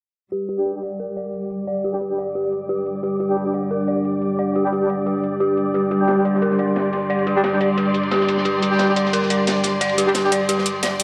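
A moderate plate reverb and a dark, low-passed sheen frame this aggressive, mechanical dark technical drum and bass excerpt at 177 BPM in G minor, where an up-front, detuned sawtooth pad holds sustained chords, lush woody strings add bowed texture, an eerie inharmonic FM bell arpeggiates through chorus and delay, tight classical-style brass stabs sound under a filter sweep, metallic electronic hi-hats run throughout, and a gritty, saturated breakbeat kit with ride and medium-tuned snare enters in the background at 5.7 seconds.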